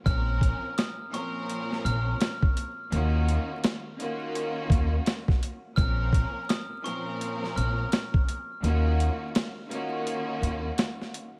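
A lush, bowed symphonic string section opens this moody, reflective boom-bap hip-hop excerpt, its vibrato-rich ensemble sound clear and focused with a smooth top, filtered at both ends so it sits back as a soft bed. Moments later a sampler-style drum kit arrives up front, gritty, compressed and pitched down, with a thumpy kick, a high-tuned snare and hi-hat riding a swung sixteenth-note feel. An acoustic upright bass plucked pizzicato on steel strings sits just as far forward, woody and warm beneath the kit. Up high, a glockenspiel struck with hard plastic mallets carries the melody in a metallic, bell-like ring, colored by tape echo and a boxy small-room character before it drops out around 7.9 seconds. The harmony rocks between two rich minor chords under light reverb and studio ambience, while vinyl crackle hangs over the whole mix, and a brief break begins at 10.1 seconds as the bass and strings fall away, leaving the drums to finish at 11.3 seconds.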